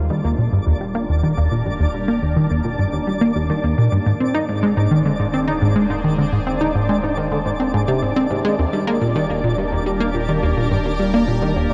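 Ambient, sequencer-driven space music in Eb major at 106 BPM, this cosmic, luminous passage is led by an up-front, driving sequenced synth riff with a detuned sawtooth bite, filter pluck, phaser and analog delay, while a bright, resonant pad with slow filter swells and a round, nasal analog bass both fade in beneath it, a twinkling granular texture adds sparkling octave-up shimmer from 0.1 s, and a dark production with a huge ambient reverb carries the harmony from Eb to Ab/Eb at 4.1 s and back to Eb at 8.6 s.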